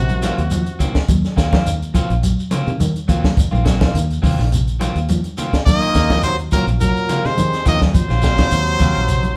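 Afrobeat with a defiant, driving mood, cut from a longer piece and settled on a single minor chord over a lightly swung groove. A brilliant, forceful trumpet carries the melody up front with vibrato, supported by a bright trombone and a clear, very quiet bass trombone on second lines. The horns sound a brief phrase at the opening and return around 5.7 seconds. Beneath them, a dark, round fingered electric bass and a compact cocktail drum kit with a punchy kick, high-tuned snare and rolled-off top drive the groove. Damped congas with hard hands sit in the background alongside a grainy, saturated shekere. A clean semi-hollow electric guitar picks arpeggios through spring reverb, while a second electric guitar at the edge of break-up adds slightly gritty stabs, all captured as a band playing live in one room with a moderate large-studio reverb.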